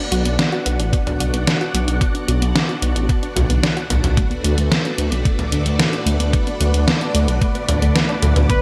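A thick, detuned saw bass pumps up front through this cinematic, driving synthwave excerpt, joined from the start by lush string-machine chords with an ensemble chorus and a mellow, round pluck arpeggiating softly in the background through chorus and delay. An overdriven 8-bit drum machine with gated reverb drives hi-hat, snare and toms, and a thumpy electronic kick enters at 0.9 seconds. The bright 1980s-style digital production sits in light ambience, and a smooth supersaw touched with 12-bit sampler grit appears only at 8.5 seconds.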